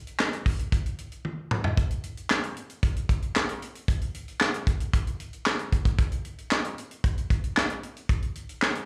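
A straight 4/4 groove at 114 BPM drives this feel-good, smooth funk clip, carried by an up-front acoustic drum kit of tight kick, high-tuned snare, hi-hat, toms and handclaps with a slapback echo, which breaks into a brief fill at 1.2 seconds, all heard as a live gig through the venue's PA with moderate club reverb.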